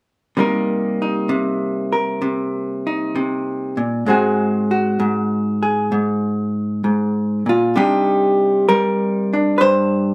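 A late-night, smoky mood hangs over this short solo jazz passage, cut from a longer piece, with a lazy swung feel in four. The only voice is a vintage hollow-body electric jazz guitar, played clean and picked, its dark, compressed tone sitting up front as it moves between low and middle registers. Starting at 0.4 seconds, the guitar settles over a minor seventh chord before shifting to a dominant seventh colour, then arrives at a richer minor ninth sound at 7.8 seconds as a new section begins. A moderate stone-room reverb gives the notes a hard-surfaced ambience, and the take feels like musicians playing live together in one space. The passage stops at 10.1 seconds.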